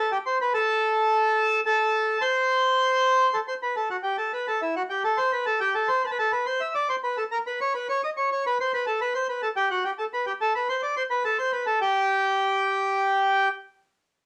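A reedy, bright, airy bandoneon plays solo and up front through this nostalgic, elegant tango excerpt in a loose rubato feel, its cassette-tape grain and moderate studio reverb giving the home recording a faded intimacy as it moves through chords like Am, Emadd11 and Gmaj9/F# before stopping at 13.5 seconds.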